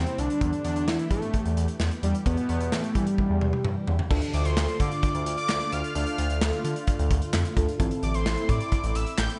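A fat, detuned analog lead with vibrato and tape echo carries the melody over a smooth, up-front sawtooth synth bass, a punchy acoustic drum kit with handclaps, and a swirling phased pad in the background, in this melancholic, nocturnal synth-pop passage at 130 BPM, where a drum fill at 3.2 seconds leads into a warbling, chorused FM electric piano entering at 4.1 seconds as the chords move from Em to Dm and Am, all bathed in an echo-heavy, darkly rolled-off mix.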